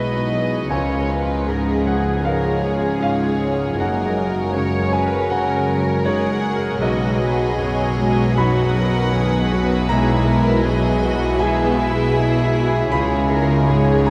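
A bright, brilliant grand piano stands out in this uplifting, hopeful orchestral film cue, its deep bass and polished presence carrying the accompaniment at a rubato pace. Two violin sections play sul tasto above it, one warm and floating on the melody and the other clear and pure on a second line, while a dark, intimate viola section and a warm cello section sit in the background, a dark double bass section holds the low end, and a very quiet, thumb-plucked harp rings out arpeggios. A huge, wet reverb places the ensemble in a vast, echoing space as the chords move from E/B through C# and F#add9 to B and back.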